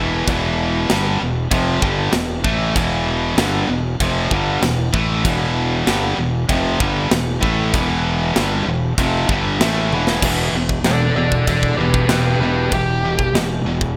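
Heavy metal at 96 BPM in E minor with a heavy, epic mood, built on a bright, double-tracked high-gain guitar riff over a dark, round fuzz bass and a tight, polished drum kit with bright cymbals, before a drum fill at 9.9 seconds ushers in a distorted lead guitar solo with delay from 10.9 seconds, all set in a bright 1980s-style digital production with plate reverb.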